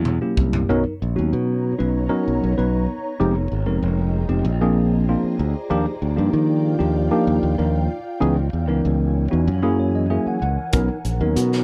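In a straight 4/4 feel, this soaring, slick electric jazz fusion passage opens with a short fill on a crisp, roomy drum kit, with its high-tuned snare and punchy kick, while a bright fingered electric bass and a worn, slightly out-of-tune tine electric piano with subtle chorus carry the rich ninth-chord changes up front. An ethereal, mellow pad enters at 1.2 s, lending airy sustained chords with ensemble chorus and built-in reverb. The electric piano plays a fill from 9.5 s before the drums return at 10.7 s, all in a dry, close mix cut from a longer piece.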